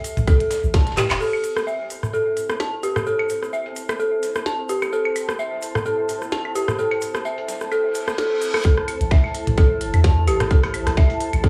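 A swung 4/4 pulse from a clicky minimal kit with a tiny snare, a gritty, overdriven sampler-style kit with tambourine sitting in the background, a grainy egg shaker and a booming analog drum machine tapping claves, rim clicks and echoing toms drives this clinical, quirky minimal techno excerpt, while a tight, up-front electronic kick and a punchy sine sub bass with a pitch-drop attack mark the opening bar before falling away. An eerie, inharmonic FM bell riff with a warbling chorus and tape echo carries the piece, joined at 1.2 seconds by a resonant, bubbling stepped-filter texture and soon after by a nostalgic, lo-fi tape-like pad, both pumping in a small, dry room. An electronic reverse cymbal rises from 7.9 seconds into the drop at 8.6 seconds, where the kick and sub bass return.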